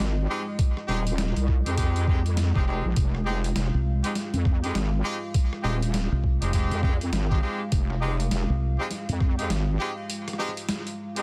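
A heavy, detuned wobble bass sits up front in this playful, swaggering glitch hop excerpt in F minor at 101 BPM with a swung 4/4 feel, joined by a gritty, overdriven thumpy kick from 0.6 seconds, a pitched-down boom bap kit with a high-tuned snare, hi-hat and rim click, clear horn stabs with delay and sidechain pumping, a moody analog pad on an Fm7 chord, and a foam-muted fingered electric bass from 3.7 to 8.8 seconds, all in a dense digital ambience before a short break at 10.1 seconds.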